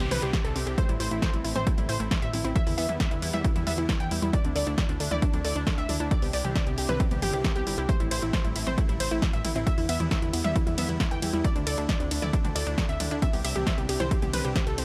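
Uplifting trance at 135 BPM in A minor, emotional and euphoric, where a bright, wave-folded unison pluck carries the melody through cassette-tape colour, sidechain pumping and dub echo, joined by a very quiet, clear baby grand piano playing a second line over a lush supersaw pad, a background pluck arpeggio with delay, a fat detuned analog bass, a punchy overdriven drum machine with hi-hat, ride, snare and toms, and an up-front overdriven kick entering at 0.3 s during a faint opening noise sweep, all cycling Cadd9, Am, Em and Dsus2 in a dry mix that closes on a band accent at 14.6 s.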